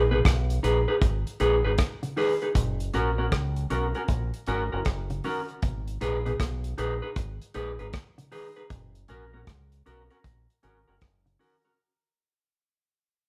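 The damped 70s drum kit stands out most, sitting up front with a dry, mid-forward sound, a tight kick and a rolled-off top as hi-hat, kick drum and rim click carry a swung roots reggae groove in 4/4 from 0.3 seconds. Underneath, a deep dub fingered electric bass is round, punchy and dark, played direct and amped in its low register. A clean, picked electric guitar supplies the accompaniment up front, its tone given a spring reverb shimmer. Further back, a mellow fingered electric guitar plays compressed arpeggios with a warbly pitch drift. The harmony moves between G#m and F#, giving the piece a hypnotic, serious mood. Captured as a band playing live in one room with light reverb, this excerpt from a longer piece fades out over its whole length.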